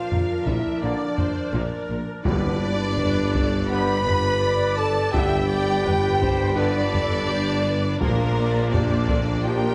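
Over a straight 84 BPM pulse in 4/4 set by a heavy-sticked taiko ensemble, this heroic, adventurous excerpt of epic orchestral film score moving from Bb to G and back to Bb has lush vibrato violins carrying the melody over a second violin line, a smooth viola section, mellow French horns and woodwinds, a bright trombone section entering at 0.8 s, clear cellos, rich double basses and a soft-attack tuba anchoring the bass, while hard-mallet timpani sound on G from 2.3 to 3.3 s, all in a moderate scoring-stage reverb.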